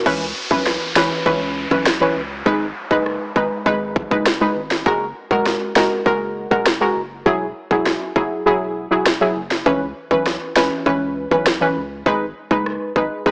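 Dancehall at 100 BPM in C# dorian, this hypnotic, sultry excerpt from a longer piece moves in a straight 4/4 through C#m7, G#m, F#add9 and Eadd9. Up front, a punchy sawtooth synth brass stab with chorus and a filter pluck sits beside a tight, overdriven electronic drum kit of kick, sharp snare, rim click and crash, re-recorded in a large room. Meanwhile, a round, deep, wave-folded analog bass stays in the background, an electronic downlifter sounds until 4.9 s, the kick drops out from 8.5 to 9.7 s, and the mix carries a dry, gritty cassette and small-speaker character with light reverb.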